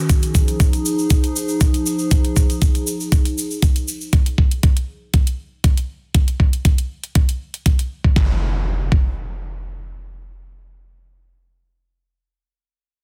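Hypnotic and raw, this acid house excerpt opens on a warbling, nostalgic pad holding a dark Fm7 chord with chorus and sidechain pumping, joined by a grainy tube shaker until 4.1 seconds, while dry, metallic hats tick along and a thumpy, up-front kick drives on until 9.1 seconds, as an electronic impact lands at 8.2 seconds in a dense, heavily limited mix.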